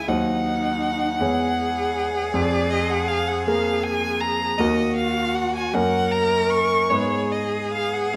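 Moving in a rubato 6/8 at 53 dotted-quarter beats per minute, this elegiac, solemn slow romantic movement for piano trio, cut from a longer piece, sets an up-front, smooth violin melody with vibrato over a focused, bowed cello second line and the deep-bassed accompaniment of a concert grand piano, all three playing throughout the 8.2 seconds in a moderate recital hall reverb captured by close, detailed microphones, as the harmony moves from Cdim/Eb through C#m/E and Ebm to Abm.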